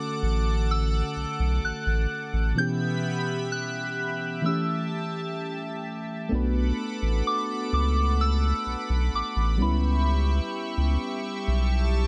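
A dry sound puts the deep, saturated sub bass up front, entering at 0.2 s beneath a round, dark FM electric piano with chorus and a shimmering, retro pulse-width pad that holds sustained chords with a slow attack. Over them, a pure, gentle synth bell carries the high melody, its long release coloured by chorus and phaser. This late-night, moody contemporary R&B moves at a slow 64 BPM in B minor, drifting from Dmaj7 through A7 to Bm7 and C#m7b5 across two matching passages.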